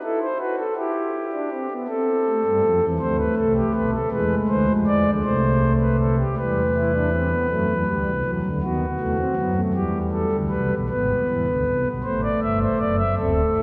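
Classical baroque-style three-part fugue, serious and contemplative, for solo pipe organ on a smooth principal stop with romantic voicing, reaching from deep pedal lows to the upper treble in 6/8, its harmony turning through minor-key progressions before settling home, all heard from further back in a cathedral whose long, wet reverb lingers around the notes in this short cut from a longer piece.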